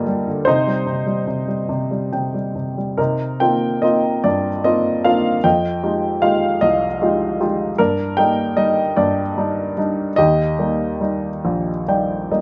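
Wistful and a little dark, this short classical fragment, cut from a longer piece, features a lone baby grand piano playing lyrically in 6/8 with free, rubato timing. The instrument sounds warm, worn and up front, captured by close, detailed microphones with a light touch of reverb, so its voice feels present and intimate. The piano ranges from a deep Bb1 up to G5, and a brief opening passage gives way at 3.0 seconds to a longer second section. Its harmony moves through minor colours, Cm, Cm11 and Fm9, before settling onto Ebmaj7 chords that lend a tender, bittersweet glow. Small piano fills decorate the close of the opening passage and the final second, sounding over the last harmony.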